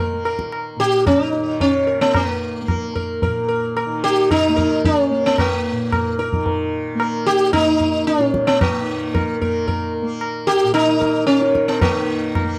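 A 112 BPM pulse in 3/4 with a straight feel carries this meditative, longing Hindustani classical passage, cut from a longer piece and tuned to A4 = 437 Hz. Up front, the plectrum-plucked sitar sings a round, buzzing melody between Bb3 and Bb4, its sympathetic strings shimmering, over a softly plucked tanpura drone lower in the mix. High-tuned tabla with a short ring enters at 0.3 seconds, and the whole is captured as a dry, close 1970s-style studio recording with little reverb.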